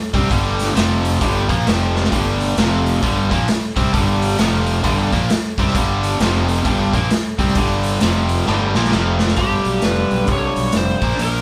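A biting, double-tracked overdriven guitar drives this gritty, swaggering blues rock and southern rock excerpt with a swung riff that rocks between G5 and F5 power chords, backed by a growly fuzz bass and a raw garage drum kit whose saturated, punchy kick and rolled-off top pump in a small room. The kit throws in fills at 1.9 seconds and again just before 9.4 seconds, when an overdriven slide guitar enters with a short melody over a settling G chord. The trio sounds like a band playing live together in a stone room with moderate reverb.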